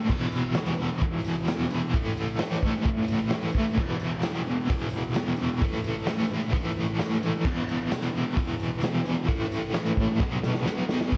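Garage rock with a rowdy, swaggering attitude, this short cut from a longer piece moves in a straight four-four. Up front, a biting, overdriven electric guitar, picked and double-tracked, plays a riff over E5 and A5 chords that reaches B5 at 10.2 seconds, and tremolo colors its tone. A raw acoustic drum kit of kick, snare, hi-hat and crash cymbal sounds dark and smooth with a rolled-off top, pairing a punchy kick with a medium-tuned snare in a bright stone room, and a drum fill closes the passage from 10.2 to 11.1 seconds. A jingly tambourine sits in the background, heard in a small room. Moderate studio reverb and the grain of cassette tape shape the overall sound.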